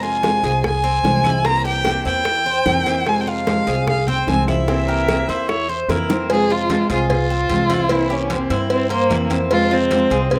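A rough home demo with a small-room sheen frames this nostalgic, danceable excerpt of Cuban son and guajira at 149 BPM in F harmonic minor, where an expressive, boxy bowed violin with vibrato and portamento carries the melody up front over a dark picked steel-string acoustic guitar, a bright metallic tres spinning arpeggios, a thumpy pizzicato upright bass, tight high-tuned bongos and cowbell, ringing low-tuned congas, a raspy guiro, woody claves until 5.7 seconds, and a clear, punchy trumpet adding a brief second line from 4.9 to 6.3 seconds, with a drum fill arriving near its close.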